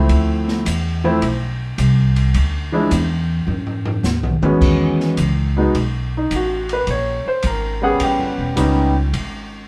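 A live one-room recording with a wet studio reverb frames this sophisticated, playful swing excerpt from a jazz piano trio, cut from a longer piece. A woody, thumpy pizzicato upright bass on gut strings sits up front beside a present grand piano with long sustain, while the open drum kit stays dark and smooth, with dark cymbals, a medium-tuned snare, a boomy kick and a rolled-off top. Over harmony moving from Dm9 through B7(no3) to A13, the drums play a fill from 3.5 s into a grand piano solo at 4.6 s, and the piano drops out at 8.9 s.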